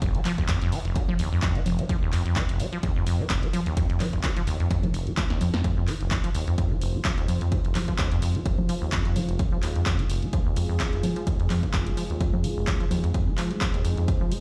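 Acid house at 128 BPM in F minor, trippy and hypnotic, with a squelchy, resonant sawtooth acid bass riff up front, carrying cassette tape grit and tape echo, over a dry, punchy analog kick and a drum machine of congas, handclaps, hi-hat and snare that breaks into a fill at 5.2 seconds, before a warbling, detuned, nostalgic pad with chorus and sampler grit pumps in from 6.5 seconds, all heard through the moderate stone room reverb of a bare room on a big sound system.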